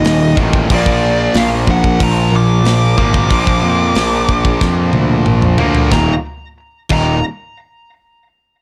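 A short, heavy and epic stretch of metal opens with a dark, high-gain lead guitar singing the melody over two picked rhythm guitars, one distorted and one overdriven, set back in the mix. A tight studio drum kit with bright cymbals plays from the start, and a growly, punchy fuzz bass joins almost at once. The drums play a fill from 4.6 s that carries the riff into a new section at 5.9 s. The production is dark with light reverb, and the piece is cut from a longer work.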